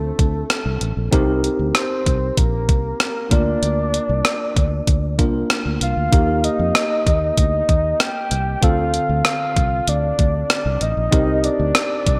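Bright, glossy digital production sits in a moderate plate reverb with a 2.3-second tail, giving this nostalgic 1980s-style pop excerpt a polished sheen. At 96 BPM in a straight 4/4, a clean 12-bit drum machine joins at 0.2 seconds, its sampler-style thumpy kick, hi-hat and rim click sounding tape-warm and up front, re-recorded in a small room and dressed in gated reverb. Beneath it, a fingered electric bass plays dark and round, direct and amped with a foam-muted tone, while a worn tine electric piano, slightly out of tune and lightly overdriven as if through built-in speakers, carries the accompaniment. On top, a soft octave-layered synth lead blends triangle, sawtooth, sine and sub-octave layers into a full, sustained voice with a fast attack, vibrato, chorus and digital delay, sitting up front with the melody. The harmony moves from Dm7 through Cm7, Bb and Eb before returning to Dm7 and Cm7, lending the passage a wistful, unresolved glow.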